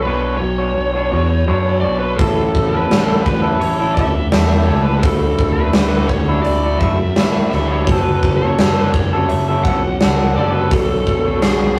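An angsty, dark quiet-loud alternative rock fragment cut from a longer piece, where a picked, overdriven lead guitar through a small cranked amp carries the melody over slightly broken-up, lo-fi arpeggios from a second guitar and a fuzzy, fingered bass, until a huge arena drum kit with a punchy kick and medium-tuned snare enters at 2.2 seconds, all captured as a rough rehearsal-room recording with tube saturation and light reverb as the chords move from Bmadd9 through A, Dadd9 and F#m.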